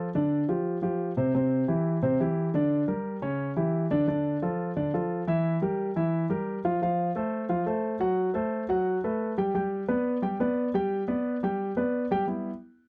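Jazz solo piano at a brisk 176 BPM in straight 4/4, this sunny, danceable excerpt cut from a longer piece features a dark grand piano playing alone from 0.0 to 12.5 seconds, its mellow, intimate, vintage tone sitting up front with audible action noise, moving from Dm through diminished passing chords to a closing G6, captured in a dry, close 1970s-style studio recording with moderate booth ambience.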